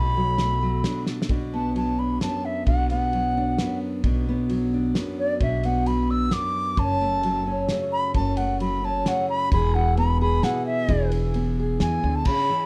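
Haunting and reflective, this acoustic folk excerpt in 3/4 is led by a bright, reedy wooden flute with vibrato and a crisp attack, which takes a solo from 1.3 seconds over chords moving from Bm to F#m and E. Beneath it sit a fingerpicked steel-string guitar with audible finger squeak and a woody, thumpy pizzicato upright bass on gut strings, while a cloth-damped drum kit with a fat snare, tight kick and dark cymbals enters at 0.4 seconds and plays a fill at 1.1 seconds. Light reverb lends a gentle sense of space to the dark, warm production.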